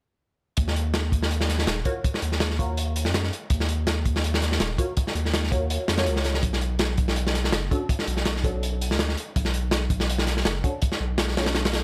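Raw and atmospheric, this drum and bass excerpt in a jungle vein runs at 164 BPM in Eb minor, with a slight swing on the sixteenths. A crunchy breakbeat kit and a saturated sub bass both enter at 0.6 seconds, the acoustic drums sitting up front with a gritty, mid-forward character, a tight kick, a medium-tuned snare, hi-hat and a rolled-off top. The sub bass is deep and thick, a sine tone pushed through tube saturation with a fast attack and sustained notes. From 1.9 seconds a filtered dub chord stab joins further back in the mix, a muted, detuned sawtooth sound with a filter pluck, a moving notch, phaser, lush chorus and dub echo that give it a dark, evolving decay. The harmony sits on Ebm7 before moving to Bm7 at 6.4 seconds, and the dry, close sound carries little reverb.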